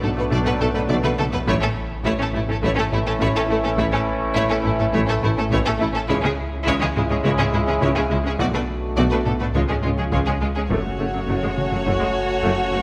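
Futuristic and relentless, this 12.8-second excerpt from a hybrid orchestral and electronic film score moves at 104 BPM in F# minor, with a rich, vibrato-laden violin section carrying the focused melody over a lush second violin line, an intense viola accompaniment, and sustained chords from a tight trombone section and a vintage-toned French horn section. Underneath, a distant cello section, a very quiet smooth-topped double bass section, a deep, round, mellow sub bass and a warm tuba hold the low end, while a soft, dark, chorused synth pluck spins very quiet arpeggios. A band-limited taiko ensemble struck with hard sticks drives the rhythm with a fill at 0.9 seconds and stops at 12.4 seconds, all set in a moderate concert hall reverb as the chords move from Bm7 through A and C#m to land on F#m at 10.7 seconds.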